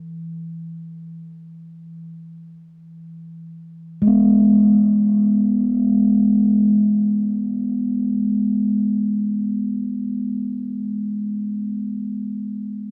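Haunting and spacious, this free-time world meditation excerpt features a solo bronze singing bowl ringing metallic and mellow between E3 and B3, struck softly with a felt mallet, its slow beating tones held up front with a delay and set in a huge, wet ambient reverb within a dark production across its 12.9 seconds.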